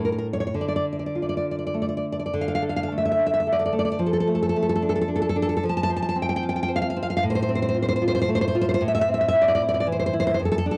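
A home cassette recording with light reverb and studio ambience captures this short fragment of a wistful, passionate romantic piece for solo classical guitar in D minor, moving in 3/4 with a rubato feel between 99 and 118 BPM. The nylon-string guitar sits up front with a full-bodied, deep classical tone, fingerpicked across a range from F2 to A5, with finger squeaks audible along the strings. After an opening moment before any chord, the harmony settles on D minor at 0.6 seconds, then passes through F-based shapes toward A minor by 8.8 seconds as the excerpt ends at 10.8 seconds.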